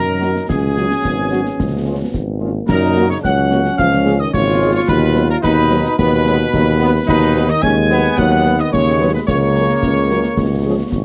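Festive and rousing, this excerpt of a military-style wind band march strides along at 109 BPM in a straight 2/4 in F# major, its close, dry sound dusted with vinyl crackle. A tight, mellow trumpet section carries the melody with light vibrato while a pure, woody piccolo adds a second line above, a very quiet euphonium joins with its own line from 1.0 seconds, and the horn and trombone sections sit in the background with soft accompaniment and sustained chords. The tuba's warm bass sits up front, and a snare drum, dark clash cymbals and a concert bass drum enter at 0.2 seconds with a gritty, vintage sampler edge.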